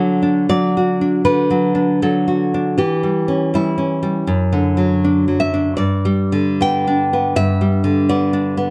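Romantic solo classical guitar, passionate and intimate, moving with a rubato feel in 4/4 between 66 and 85 BPM in D major, tuned to A4 = 436 Hz. A single fingerpicked nylon-string guitar, bright and full-bodied, sits up front through close, detailed microphones and light reverb, its range running from F#2 to G5. This short cut from a longer piece travels from D through C#dim/E and D/F# to arrive on G at 5.8 seconds.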